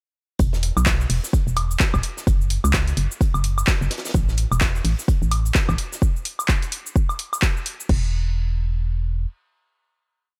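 Piano house at 128 BPM with a swung sixteenth feel, this short, joyful and uplifting piece opens straight into a drop at 0.4 seconds, driven by a punchy, layered four-on-the-floor electronic kick and an overdriven analog drum machine re-recorded in a large room, its shaker, woodblock, hats, claps and crash sitting up front, while a big-room acoustic kit with a fat snare and rolled-off top plays a looped, edited breakbeat in the background until 6.0 seconds. Underneath, a hollow, organ-like FM bass with a fast attack, a decaying tone and tube saturation pumps against the kick in a dark dotted rhythm. The drums drop out at 8.0 seconds, leaving the bass to ring out a final note until 9.3 seconds in a dry mix.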